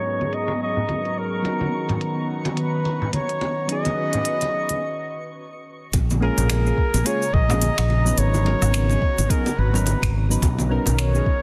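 This sunset chillout piece moves at an easy 107 BPM in 4/4 with a 16th-note swing, its mood warm and smooth. An up-front flugelhorn carries the melody in a classical-style solo voice, coloured by tape echo, over mellow electric-piano-like synth keys treated with chorus and tape echo, and an airy, breathy pad of detuned sustained chords with chorus and phaser. A filter sweep runs on the pad through the opening stretch, while a twinkling granular texture sparkles far in the background until a short break at 4.8 seconds. A smooth R&B kit with crisp hats, cabasa, finger snaps and woodblock, with overdrive and a soft-clipped snare, plays alongside bright, vintage-sounding congas. At 5.9 seconds a dark, round, punchy fretless bass and an overdriven electronic kick enter together, giving the second half a firmer floor as the harmony moves from Bbm7 through Abm11 to Bmaj7. The mix sits in light reverb with a dense, heavily limited modern master, a low-pass filter and some lossy compression artefacts, and the recording is cut from a longer piece.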